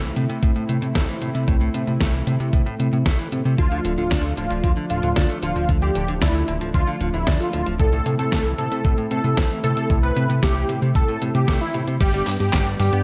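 A mellow chorused analog pad, a clean direct-recorded electric guitar picking arpeggios with 12-bit sampler grit and delay, a dark, glossy synth bass and a detuned 8-bit drum machine playing snare, handclaps, hi-hat and crash in gated reverb open this melodramatic, nostalgic italo disco excerpt at 114 BPM. A gritty, thumpy kick joins at 0.4 seconds, and a thick, bright, up-front unison lead with vibrato, cassette-tape colour and delay enters at 3.6 seconds. The harmony moves from Am/C to Dm and back to Am/C, reaching a band accent at 11.5 seconds before turning to G.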